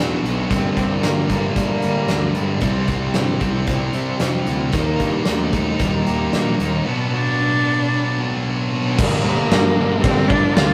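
Dark and brooding, this quiet-loud alternative rock excerpt moves at 113 BPM in a straight 4/4, with a thick, background fuzz guitar riff and a bright, scooped high-gain guitar riff stacked over a growly, overdriven picked bass while a very quiet, compressed clean electric guitar plays fingered arpeggios. A big rock drum kit, up front in a big room with a fat snare and punchy kick, enters at 0.3 seconds, and a rich, focused bowed cello with vibrato carries the melody in the background from 0.5 seconds. The chords cycle through Bm, Gm, C and Eb, and at 9.0 seconds the clean and high-gain guitars stop, leaving fuzz guitar, bass, drums and cello in a rough rehearsal-room sound with light reverb.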